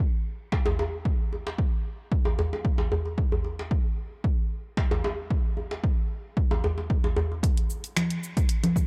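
Downtempo at 113 BPM in 4/4, this short piece cut from a longer work carries a mystical, hypnotic mood, with a light swing on the sixteenths. An overdriven, punchy electronic kick drum sits up front from 0.5 seconds, together with a tight, cracking djembe with a vintage, band-limited character and the sound of hard hands. At 7.4 seconds the djembe stops and a layered deep house drum kit takes over, bringing cabasa, congas, finger snaps and hi-hat, its percussion, snare and hats softened by low-pass filtering and roughened with overdrive. The kick carries on alongside this new kit until the close at 8.9 seconds. A digital ambience surrounds the parts, giving the production a dark, warm cast.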